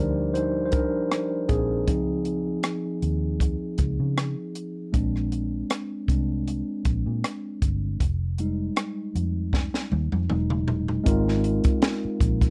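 A mellow tine electric piano takes the lead with a solo from the opening through 11.1 seconds, its clean tone sounding through built-in speakers and sitting up front in this smooth, romantic excerpt of lush 1970s-style soul. A round, dark, foam-muted electric bass sits just as close beneath it, amped and fingered, while a compact cocktail drum kit comes in at 0.4 seconds with a punchy kick, a high-tuned snare, hi-hat, rim clicks and toms. The groove moves at an unhurried 78 BPM in 4/4 with a light sixteenth-note swing, in E-flat major. The harmony glides through Ebmaj7, Dbmaj7, Bb7 and Fm7 before a drum fill from 9.5 seconds leads through Emaj7 into a closing section on Ab6. The sound is dry and close, with little reverb, like an intimate 1970s studio session.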